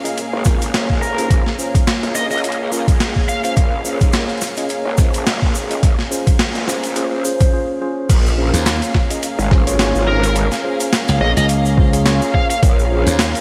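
This glitch hop excerpt has a bright, 1980s-style digital sheen dusted with vinyl crackle and a moderate hall reverb, and its mood is funky and gritty, set at 106 BPM in Bb minor with a 16th-note swing, resting on a Bbm7 chord. A moody analog pad with sampler grit, phaser and sidechain pumping sits in the background beside a lush, woody string section, while a mellow tine electric piano plays filtered, delayed stabs that carry a filter sweep through the build-up to 8.1 seconds. A pitched-down, overdriven boom bap kit brings crash, hi-hat and a high-tuned snare through gated reverb, and a thumpy electronic kick sits up front, with a grainy tube shaker tucked behind. A growling, wobbling, detuned bass drives the low end, and a smooth overdriven lead guitar plays picked melody lines from 1.0 to 3.5 seconds and again from 10.1 seconds. After a short break, the drop lands at 8.1 seconds, and a glassy, punchy slap bass joins up front shortly after, at 8.5 seconds.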